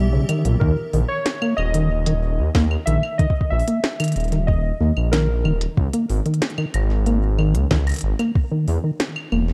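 This glitchy, melancholic IDM fragment opens on a brief icy, crystalline pad with chorus and its own reverb, over a rubbery, resonant acid bass arpeggio colored by cassette tape and digital delay and a rumbling, beating detuned saw bass held up front. An organic electronic kit of claves, crisp hats and a woody snare with delay slips in at 0.3 seconds. At 0.6 seconds a soft, tape-warm kick and warbling, nostalgic lo-fi synth keys with chorus and delay arrive, the keys carrying the melody until 5.6 seconds within a dark production under light reverb.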